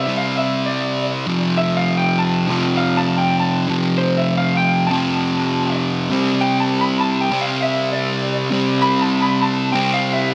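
Bathed in a moderate concert-hall reverb, this hopeful, cinematic rock excerpt pairs an up-front, double-tracked, distorted and compressed fuzz guitar riff with a dark, slightly broken-up slide guitar melody that sits lower in the mix through an analog delay, both playing across the full 10.3 seconds as the harmony moves from Csus2 to F and settles on C5.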